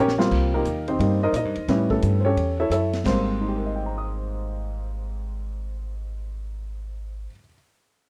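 A dry, close 1970s-style studio sound frames this short, playful fragment of an up-tempo jazz piano trio, swinging at 175 BPM in Ab major. A vintage drum kit with a punchy kick and high-tuned snare opens with a quick fill, then drops out at 3.2 s, while a woody, thumpy pizzicato upright bass on gut strings plays beneath through Cm7 and A7 before landing on Abmaj9 at 3.0 s. Up front, an intimate baby grand piano with audible action noise and short sustain carries the melody to the end at 7.5 s.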